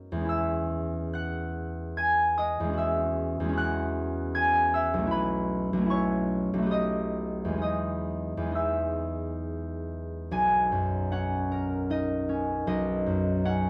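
A fingerpicked concert harp carries this brief classical solo on its own from start to finish, its ringing, up-front tone filling the 13.7 seconds. The mood is dreamy and graceful, moving in a flexible, rubato 3/4 that drifts between 62 and 80 BPM. Rooted in E major, the harmony passes through colorful chords such as F#sus2/E, B9sus4 and Baug7 before settling on Emaj7, then shifts toward B major at 10.3 seconds with a Bmaj9. The harp spans a broad register, from a deep B1 up to a glistening G#6. Light reverb and a dark, warm production give the acoustic instrument an intimate glow, and the passage is clipped from a longer piece.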